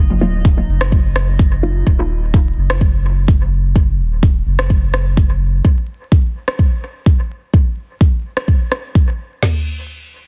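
The recording is dense and heavily limited, with a dry sound and a layer of vinyl crackle. This short dub techno cut moves at 127 BPM in a straight 4/4, holding on an Eb minor chord in a hypnotic, meditative mood, tuned slightly low to A4 = 436 Hz. At the opening, a muted, detuned chord stab with a filtered pluck and a phaser soaks in dub echo and sidechain pumping. Behind it drifts a glassy texture of drifting overtones with chorus and reverb. Both are gone by about 2.1 seconds. A round, sine-based sub bass sits up front and pumps to the sidechain until 5.6 seconds. From 0.4 seconds an electronic deep house kit sits in the foreground with a deep kick, a woody snare, toms and crash cymbal in a small room, while a layered electronic rim click joins soon after, trailing its own dub echo.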